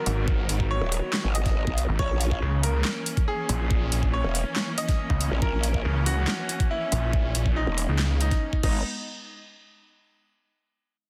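A half-time 4/4 pulse drives this heavy, chaotic wobble dubstep drop, with a knocking electronic kick and a layered dubstep kit of huge snare, handclaps, metallic hats and crash cymbal sitting up front. Two aggressive basses dominate: a snarling, detuned saw bass with overdrive and a moving notch, and a wobbling growl bass with formant filtering, distortion and chorus that joins at 0.8 seconds. Above them a brilliant concert grand piano carries the melody through digital delay while a lush, bowed symphonic string section holds sustained chords with sidechain pumping, set in digital ambience and a dense, heavily limited modern master.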